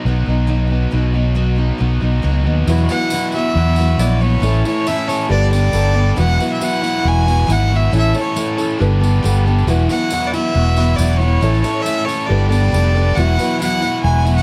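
A clear, smooth fiddle with light vibrato carries the melody from 2.9 s in this short, warm and nostalgic slice of folk rock and heartland rock, moving at 137 BPM in a straight 4/4. It sits over a round, punchy, up-front electric bass, full-bodied jumbo acoustic guitar with fresh strings and finger squeak, and a biting, double-tracked overdriven guitar riff, which together open the track before the reedy, breathing harmonium, dark and mellow grand piano and jingly tambourine join in the background at 2.7 s. Light reverb frames the cycling Esus2, A and Gadd9 chords, and the piano adds a brief fill at 9.0 s.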